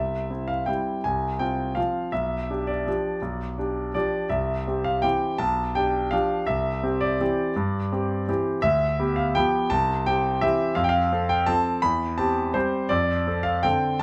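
A clear, intimate concert grand piano plays alone throughout this short fragment of a playful, sparkling classical waltz, its three-beat lilt pushed and pulled with rubato. The piano sits up front with deep bass, long sustain and audible action noise, and a borrowed F minor chord over C adds a brief shadow near the start before the harmony turns bright again. A moderate stone-room reverb wraps the polished sound in a natural acoustic space.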